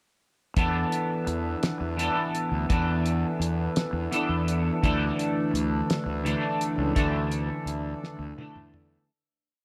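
Hazy and kaleidoscopic, this brief psychedelic rock piece moves at a slow 56 BPM in 6/8, with a double-tracked, twangy electric guitar riff of clean ringing chords through a rotary speaker, a round, fuzz-overdriven fingered bass playing a syncopated riff, a reedy, breathing hand-pumped harmonium pad, and a cloth-damped, thuddy drum kit with a fat snare and tight kick, all in small-room ambience, shifting from E7sus4 to Dsus2 at 4.8 seconds before a fade-out beginning at 7.0 seconds and a drum fill at 8.0 seconds, both running to 9.1 seconds.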